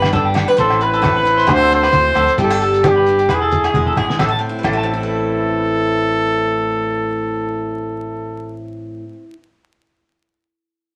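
A danceable highlife guitar band fragment opens with an up-front, bright picked steel-string acoustic guitar, clean electric guitar arpeggios, a dark, round fingered bass, a muffled, gritty cloth-damped drum kit and ringing agogo bells, with very quiet hard-handed congas joining at 0.1 s, before a punchy, close-miked, jazz-style trumpet takes the melody at 0.6 s, and after a drum fill the kit and percussion stop at 4.8 s while the guitars, bass and trumpet carry the swung groove on through moderate studio reverb and vinyl crackle.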